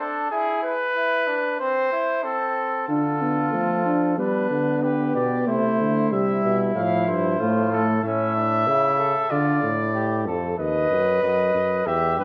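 This brief excerpt from a longer piece sounds as if captured in a recital hall, with a moderate reverb whose 1.5-second tail gives the brass a spacious, roomy bloom. It is a serious, solemn classical canzona for brass ensemble in D minor, moving at 94 BPM in a straight 4/4 with imitative writing. A warm, up-front cornet carries the melody from the start, joined by a flugelhorn with light vibrato on the second line, both set at a slight distance in the hall. At 2.9 seconds the lower voices arrive: a mellow, close-miked euphonium with light vibrato and a punchy edge plays the accompaniment until 8.0 seconds, while a bright, punchy bass trombone sits up front on the bass line through to the end. The harmony moves steadily through chords such as Dm, G, C and F before landing on A and returning to Dm, giving the passage a grave, ceremonial weight.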